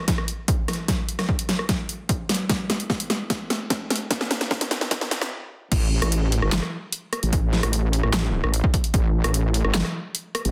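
A half-time 4/4 pulse at 149 BPM drives this menacing, heavy wobble dubstep cut from a longer piece, opening with a build-up where an overdriven dubstep drum kit of huge snare, bright hats, handclaps, rim click and crash cymbal plays a fill over a punchy electronic kick under a filter sweep, before a brief stop at 5.3 seconds. The drop lands at 5.7 seconds as a saturated, detuned sawtooth wobble bass enters low and up front, treated with chorus and overdrive, while the kick falls away at 9.0 seconds. The dense, heavily limited master carries light reverb.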